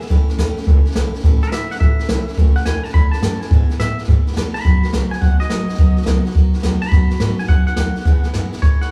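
A rowdy, upbeat rockabilly cut opens with the whole band at once: jazz brush drums, upright bass, a picked steel-string acoustic guitar and a twangy electric guitar all start together at 0.0 s. The drums sit up front, played with brushes, with hi-hat, a medium-tuned snare and a boomy kick, heard from a roomy distance in a small space. The pizzicato upright bass, strung with gut, gives a woody, thumpy low end, while the bright, full-bodied dreadnought acoustic is picked with fresh strings to carry the accompaniment. Above them, the clean, compressed electric guitar plays the fingered melody, softer in the mix and bathed in spring reverb. The tune moves at a brisk 211 BPM in 4/4 with a swung eighth-note feel, shifting through A, E and B over this short stretch of a longer piece, all captured as a live band in one room with light reverb.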